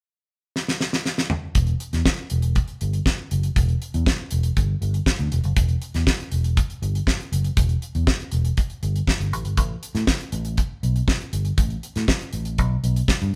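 A band playing live in one room, bathed in a wet studio reverb, opens this danceable, driving disco cut taken from a longer piece. The damped 70s drum kit of hi-hat, kick, snare and toms sits up front with a dry, airy, polished sound, a fat snare and a tight kick, and starts with a fill from 0.6 to 1.6 seconds. At 1.6 seconds the fingered electric bass joins, dark, round and amped, playing up front in a low register while the drums continue.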